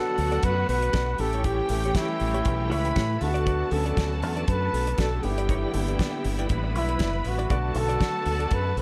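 A dry, close sound with little reverb frames this short cut from a longer disco piece in B minor, glamorous and driving at 119 BPM with a light swing on the sixteenths. Up front, a breathy, mellow flugelhorn carries the melody in a jazz style, its scooped notes and light vibrato trailed by a slapback echo. Beneath it, a deep, round fingered electric bass and a damped 70s drum kit enter at 0.2 seconds, the bass dark and punchy, the kit's fat snare, tight kick and hi-hat airy and polished under a rolled-off top. Two distant, lush string sections fill out the arrangement: a dark, woody one plays a second line, while a clear, focused one holds sustained chords in the background. A concert grand piano with deep bass and a clean, compressed electric guitar with tremolo sit further back as accompaniment. The harmony moves from Bm7 through A7, D6 and G6 before returning to Bm7.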